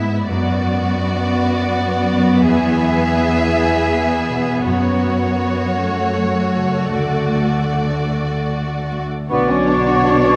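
Cinematic, sorrowful film-score music for orchestra in a rubato 6/8 at about 50-56 BPM in B dorian, where lush bowed violins carry an expressive vibrato melody over a second violin line, focused violas, rich cellos and a ringing harp in the background, all bathed in wet scoring-stage reverb with vinyl crackle, until at 9.3 s a bright flute group, clear clarinet, vintage-toned oboe, distant dark horns and a chamber double bass section join on a Bmadd9 chord.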